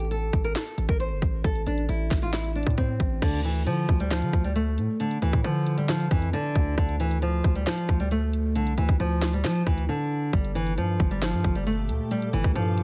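Melancholic yet hard-hitting, this cut from a longer hip hop and trap piece moves with a half-time feel. A small, fingerpicked nylon-string guitar carries the melody up front, its tone softened by a low-pass filter, while a distorted 808-style bass underneath sounds aggressive and heavy, with a noisy edge, a fast attack and a decaying tail. The electronic trap kit sits forward in the mix, with a hard-clipped kick, a sharp snare, metallic hi-hats and crash cymbal. The harmony moves from Am to Dm and, after a brief break at 9.9 seconds, lands on Gmadd9. At 11.6 seconds a glassy, ethereal FM pad enters in the background, holding mellow sustained chords bathed in chorus, reverb and phaser. The whole track has a dense, heavily limited modern master with a layer of vinyl crackle.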